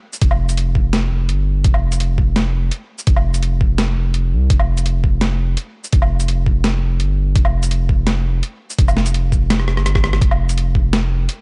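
Dry and dark, the production keeps its top end rounded off, giving this cinematic fragment of half-time drum and bass a close, shadowy feel. At 168 BPM in 4/4, the groove moves at a heavy half-time pace. An overdriven electronic kick sits up front with a gritty, thumpy punch, compressed and re-recorded in a small room. A boom bap sampler-style kit fills in hi-hat, rim click, shaker, woodblock and a medium-tuned snare, sitting lower in the mix with its own grit and overdrive, and it plays a drum fill from 9.5 to 10.2 seconds. Underneath, a deep, thick sine sub bass with saturation and a fast attack holds sustained notes between F1 and C2, pushed forward alongside the kick to give the piece its brooding weight.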